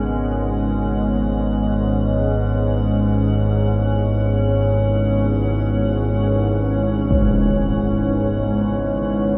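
This dark ambient drone opens with three sustained layers sounding together, an unsettling, ominous bed in free time built on a C#m/G# chord. Up front, a deep, moody pad of detuned sawtooth voices with a sine sub octave holds the chord through a slow attack and long release, mellow in tone and washed in chorus and built-in reverb. Beneath it, an evolving analog drone of sawtooth and pulse waves warbles with pulse-width modulation, giving the low register a vintage, dark heft. A quieter FM drone adds a metallic, inharmonic and eerie shimmer, sitting farther back in the mix. At 7.1 s a huge, bright impact strikes through a low-pass filter before vanishing into the vast reverb, whose 8.4-second tail drenches the whole space in this brief, ominous fragment cut from a longer piece.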